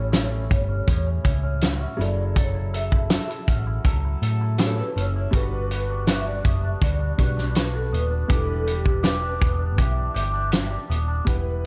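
The vibraphone, played with soft mallets, carries the melody through this short excerpt of mellow, lonely indie bedroom pop, its metallic, ringing tone shimmering with a fast motor vibrato, an ensemble chorus and tape echo. Underneath, an electric guitar run through an envelope filter adds bright, twangy, scooped accompaniment, thickened by lush chorus and a warbly pitch drift. A worn, woody upright piano sits in the background, slightly detuned, while a dark, round hollow-body bass, picked and amped, stands up front with a loose indie drum kit that has a fat snare, tight kick and rolled-off top. A jingly tambourine, close and dry, adds a faint sparkle from 0.1 to 10.7 seconds. At 81 BPM in a straight 4/4 in E dorian, the chords move from A7 to F#m7, Gmaj7 and Em7, all wrapped in studio reverb and a cassette tape sound.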